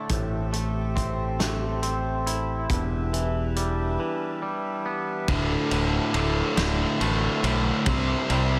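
Reedy harmonium chords breathe in the background beneath a twangy, clean, tape-echoed guitar arpeggio as a bright fingered bass and a gritty, punchy indie drum kit join in this melancholic, cathartic post-rock fragment in 6/8, passing through a break at 4.0 seconds before an overdriven, up-front distorted guitar riff enters at 5.3 seconds to drive a build-up, all set in a lush hall reverb with a big arena sound.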